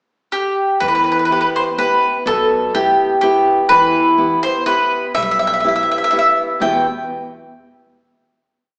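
An Italian folk serenade in E minor at 124 BPM in a lightly swung 3/4, wistful and passionate, where a mellow, round, double-strung mandolin sits up front with a picked, motif-based melody from 0.3 s. At 0.8 s a fingerpicked flamenco guitar with fresh strings joins, playing oompah bass notes and chord figures, along with a woody, growly pizzicato upright bass far in the background on root and fifth along the main beats, all carried by a wet recital-hall reverb with a small-speaker sound until the final chord arrives at 6.6 s.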